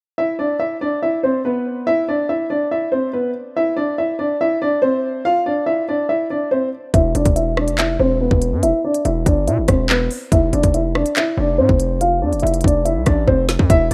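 Drill hip hop at 142 BPM in a half-time feel, cold and dark, this fragment opens with a mellow, boxy baby grand piano carrying the melody through a low-pass filter with audible action noise, then at 6.9 seconds a distorted, saturated 808-style bass and an up-front electronic drum kit with a hard-clipped kick, woody snare, crisp hats, handclaps and rim clicks arrive as a filter sweep moves over the piano, capped by a drum fill near 13.3 seconds, all in a rough home demo mix with light reverb and digital ambience.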